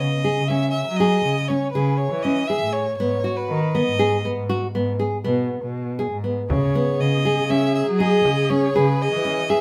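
A moderate studio reverb gives this short chamber passage its room sound, with a bowed violin, fingerpicked nylon-string guitar and bowed cello placed up front. Cut from a longer contemporary instrumental piece in C# minor, it moves at 120 BPM in an uneven 7/4 with a straight feel, and the mood is hypnotic yet restless. The classical guitar lays down full-bodied arpeggios while the dark cello carries the bass with vibrato, portamento and a smooth top, and the solo violin sings a warm, even melody with vibrato. At 6.5 seconds a rich viola joins on a second line, expressive with a soft attack and sliding portamento, alongside a deep frame drum played with soft hands. The harmony shifts from C#madd9 to G#m7 at 3.0 seconds and back to C#madd9 as the viola and drum enter.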